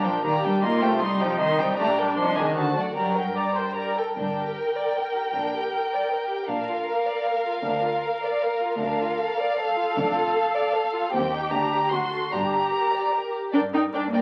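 Vinyl crackle from a very old 78 rpm record surrounds a string orchestra playing a quick, restless classical-period movement in triple metre, an excerpt cut from a longer piece. Up front, the violins carry the high melody with light vibrato, a soft attack and an intimate sul tasto tone, while a second violin line, distant and expressive violas, and a rich cello bass move beneath them. A soft, far-off double bass sits at the bottom, and the whole dramatic passage is heard through the moderate reverb of a large room.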